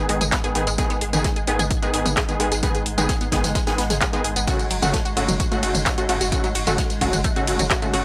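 Driving peak-time techno at 130 BPM in G# phrygian, this relentless excerpt pairs aggressive, detuned sawtooth rave stabs up front with a swarming, granular drone, a squelchy ring-modulated blip pluck riff under phaser and tape echo, a thick saturated sub bass, a punchy electronic kick entering at 0.3 seconds, an up-front techno kit of handclaps, metallic hats, ride, tambourine and toms, and a very quiet acoustic kit of hi-hat and bundle-stick snare, all moving from G#m to F#m in a dry, gritty hardware recording.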